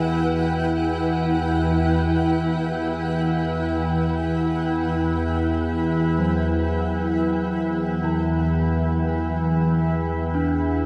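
A calm, detuned organ-like drone in the low register and a bright, cloudy granular pad of blurred sustained chords open this desolate, dark ambient drone in free time, resting on an Emadd9 in E minor tuned to A4 = 436 Hz, with the drone thickened by ensemble chorus and the evolving pad by lush chorus. At 6.2 seconds a close-miked gamelan-type bronze metallophone enters with ringing, metallic arpeggios struck by a wooden mallet and echoed through analog delay. The dreamy mix is soaked in a huge 7.4-second reverb while the pad fades out over this short cut from a longer piece.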